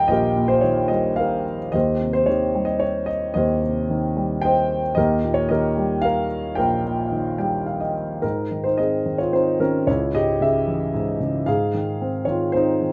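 In a flowing three-beat metre played with free rubato, this lyrical classical solo piano passage, cut from a longer piece, carries a warm, sunny mood. The concert grand sounds dark, mellow and intimate, placed up front with deep bass, audible action noise and a vintage smoothness under light reverb. A brief fill from 7.1 to 8.2 seconds leads into a new section at 8.2 seconds, where the harmony moves between Ab6 and D-flat minor chords.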